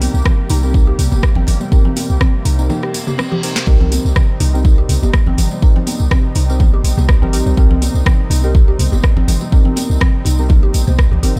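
The sound is close and dry, with little reverb, and a deep electronic kick sits up front beside a boomy, sine-based 808-style bass with a fast attack and a noise layer, the bass pumping under sidechain compression. This afro house excerpt has a spiritual mood and a gently swung sixteenth-note feel, built on a Cm7 chord. An afro-pop drum kit with a sharp snare, metallic hats, rim clicks and toms adds a tape-saturated edge in a small room, while bright, band-limited congas with hard hands sit in the background and a jingly tambourine stays near and dry. A smooth, warbling analog pad holds sustained chords with a slow attack and chorus, and a dark, wave-folded chord stab adds soft, detuned hits with dub echo. A woody, round, mallet-like FM pluck plays arpeggios through phaser, lush chorus and dub echo. A short break arrives at 2.7 seconds, where an electronic reverse cymbal sounds from 2.9 seconds and a drum fill from 3.2 seconds closes it at 3.7 seconds.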